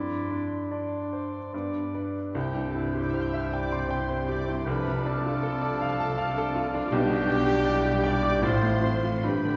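A lyrical, passionate romantic movement for piano and orchestra in a rubato three-beat metre with uneven beats. The clear, intimate baby grand piano carries the melody up front, its action noise audible, over a hollow flute, a clear oboe and a clarinet in soft second lines, with mellow bassoon accompaniment and dark, sustained French horn chords. Around 2.3 seconds the muted strings enter, veiled and con sordino, with violins on melody and second line, violas accompanying, and cellos and double basses on bass, alongside soft trumpet stabs and sustained trombone chords, all set back in a reverberant concert hall with a dulled top end.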